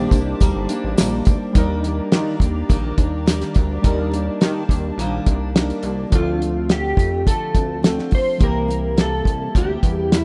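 A straight 4/4 groove at 105 BPM comes from a dry, cloth-damped drum kit with a fat snare and tight kick sitting up front, joined briefly by a jingly tambourine in the background, in this mellow, hazy stretch of indie bedroom pop cut from a longer piece. Underneath, a glossy chorused synth bass, a bright picked steel-string acoustic guitar with finger squeak and lush chorus, and warbling lo-fi synth keys with cassette-tape colour carry the Ebmaj7 harmony, while a hollow, flute-like pad holds sustained chords until 6.1 seconds. A slightly broken-up electric guitar through a small old amp, coloured by analog chorus and delay, plays a short melody at the start and returns at 6.2 seconds as the chords move to Dm7 and C7, set in a rough home-demo mix with small room ambience.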